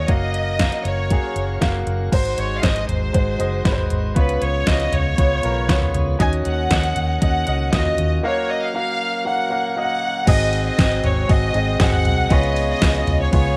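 A lush, clear violin section carries the melody from the very start of this hopeful piano-driven pop excerpt, sitting up front with focused vibrato over a baby grand piano whose intimate, natural tone has long sustain and audible action noise. A round, punchy muted electric bass enters at the same moment, dark and amped, while a tonewheel organ holds piping, scooped chords in the background through a slow rotary speaker. The pop drum kit arrives at 0.1 seconds with a layered, produced sound: a knocking kick, a deep snare, hi-hat, ride, crash and toms, overdriven, re-recorded in a small room and placed up front. At a straight 118 BPM in 4/4, the harmony moves through F#maj7, G#7, C#7 and D#m7 before returning to F#maj7 and cycling back to G#7 and C#7. Light reverb gives the whole a gentle sense of space, and the passage is cut from a longer piece, ending at 13.6 seconds.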